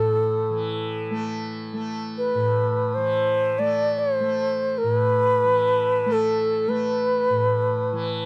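The sound is dry and close, in the manner of a 1970s studio recording, with a short, moderate booth ambience. This solemn, meditative fragment of Hindustani classical music, cut from a longer piece, unfolds in free time in raga Kafi on A. A bamboo bansuri carries the melody between A4 and D5, its airy, close-miked tone sitting up front with vibrato and tongued notes. Beneath it, a tanpura holds a softly plucked drone from A2 to A3, its buzzing, shimmering strings also present and near. Both parts sound together for the full 8.3 seconds, leaving a calm, intimate impression.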